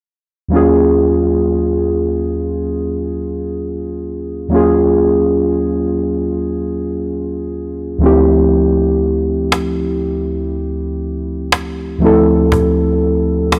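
Muted, felt-like synth keys carry this moody, sensual contemporary R&B piece from 0.5 seconds, their dark tone built from triangle and sawtooth layers with a noise layer, a filter sweep and a touch of chorus. Each note has a fast attack and then decays, giving the slow, softly swung accompaniment an intimate, close-up feel as it moves from Ebm11 to Dm11 at 8.0 seconds. At 9.5 seconds a cajon enters, woody and acoustic with faint snares, sitting close, dry and up front beside the keys. The small room adds light reverb, while the hardware recording has a gritty edge from transformer saturation. The passage is cut from a longer piece.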